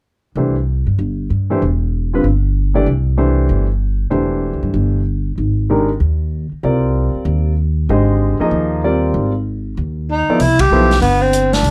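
Spiritual and searching, this modal jazz excerpt swings at 191 BPM as a clear, vintage grand piano and a woody pizzicato upright bass open together over Cadd9 and Abmaj9 chords, before a breathy, whispered tenor saxophone with subtone, vibrato and scooped notes enters at 10.1 seconds and a distant big-band drum kit with a boomy kick joins at 10.4 seconds, leading to a band accent at 10.6 seconds in a light reverb.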